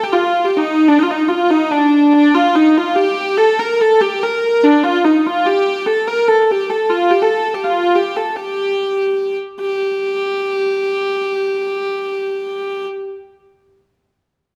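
A medieval piece in triple metre with a straight feel, this short excerpt from a longer work carries an ancient, driving mood. A single hurdy-gurdy plays solo from 0.0 to 12.9 seconds, its wheel-bowed, keyed voice sitting up front in the mix. The tone is dark and woody, with the melody moving within a compact middle range. The recording places the instrument in a recital hall with a generous, wet reverb that lends the sound depth and space. The music falls into two sections, with the second beginning at 9.6 seconds.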